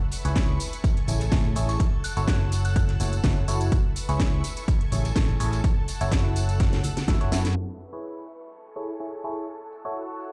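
Filtered and booming, as if played through a big sound system in a bare room, this soulful, energetic piano house cut runs at 125 BPM in F# minor with a light 16th-note swing over C#m7, Amaj7 and F#m7 chords. A punchy, overdriven electronic kick, a layered house kit with cracking snare and metallic hats, a very quiet dark brush kit, faintly ringing tambourine and congas, and a growly, up-front fingered bass sit under a biting, percussive FM electric piano riff with phaser and delay. A silky, detuned string pad pumps beneath, and a glassy, warbling synth bell surfaces briefly at 1.7 seconds. Around a drum fill from 6.6 seconds and a band accent at 7.4 seconds, the kick, bass, brushes and hand percussion drop away by 7.6 seconds, leaving a filter sweep and a faint downlifter over the pad, piano and house kit.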